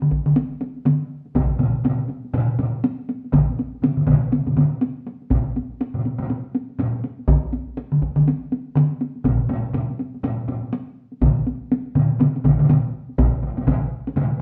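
A solo taiko drum part struck with hard sticks opens this ceremonial, driving excerpt of Japanese traditional drumming, sitting up front in a lively room until it stops at 12.8 seconds. Around it, several taiko ensemble layers fill out the sound: one played with hard sticks is close and dry, another with hard sticks sounds distant, as if in a large room, and a third, struck with heavy sticks, joins at 1.4 seconds with a live-room character. The tempo is 122 BPM in 4/4, with a 60% swing on the sixteenths that gives the pulse a rolling lilt. The group plays together in one room, and a wet studio reverb adds a short tail. The ensemble drums carry on briefly into a new section from 13.2 seconds before the cut.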